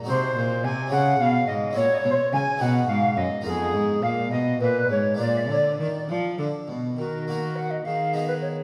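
Baroque-style classical sonata movement in Eb minor, solemn and introspective at 70 BPM in a straight 6/8, where a pure, softly chiffing tenor recorder carries the melody over a bright, vibrato-tinged wooden flute second line, an up-front gut-string cello bowing a reedy bass, and a brilliant plucked harpsichord continuo, all set in a recital hall's wet reverb and cut from a longer piece.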